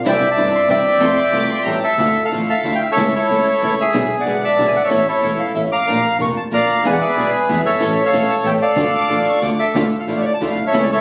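Captured on a phone in a club room with vinyl crackle and club reverb, this melancholic, sultry tango fragment in D harmonic minor moves at 186 BPM in a rubato 3/4, with a reedy, vintage bandoneon carrying the melody up front over fingerpicked nylon-string guitar, a biting, boxy bowed double bass, soft sul tasto stabs from a dark string section in the background, and a close, expressive violin section adding a brief second line at 1.0 and 8.9 seconds.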